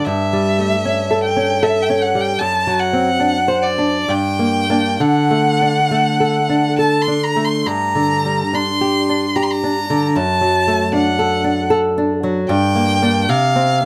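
A rich violin carries the melody with vibrato, soft attacks and expressive portamento over fingerpicked nylon-string guitar in this melancholic, elegiac romantic duo in G minor, a rubato 3/4 passage at 64-78 BPM that circles between G minor and D chords, captured with close, detailed microphones and light reverb, and cut from a longer piece.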